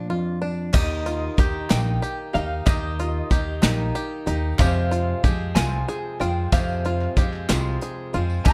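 In a 6/8 at 62 BPM, this uplifting, hopeful indie folk clip in Eb major opens on a full-bodied fingerpicked steel-string acoustic guitar, a twangy bluegrass banjo playing arpeggios, and a slightly broken-up tremolo electric guitar carrying the melody, before, at 0.7 s, the fingerpicked guitar gives way to a boxy, swing-style picked acoustic guitar, a woody, thumpy pizzicato upright bass, an up-front brushed drum kit with dark cymbals and a punchy kick, a hollow group handclap and a faint jingly tambourine, all set in light reverb within a dark, warm production.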